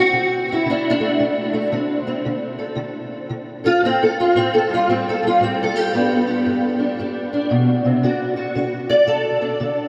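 Acoustic country blues in D mixolydian at 114 BPM, this laid-back yet rollicking fragment from a longer piece swings its eighth notes in 4/4 as a lone fingerpicked steel-string guitar moves through D7, Am7 and G before settling back on D at 8.0 seconds. The parlour-style guitar sits up front with a dark, woody, boxy tone from old strings, colored by ensemble chorus and tape echo. A huge ambient reverb soaks the whole mix in a dreamy wash.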